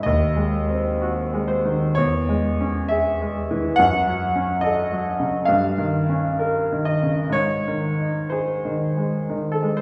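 A bright concert grand piano carries this brief romantic nocturne on its own, its tone brilliant and slightly worn, with a deep bass reaching down to D#2 and an upper register extending as high as F#5. The mood is wistful and melancholic, and the playing breathes freely in rubato over a 4/4 metre, tuned a touch low to A4 = 435 Hz. The harmony moves from G#7/D# through C#m/E, F#m and D#7/G before arriving on G# at 7.4 seconds. The piano sits present and up front, yet a wet recital hall reverb with a 1.4 s decay and a small room ambience give a sense of listening from further back in the space. The fragment, cut from a longer piece, lasts 9.8 seconds.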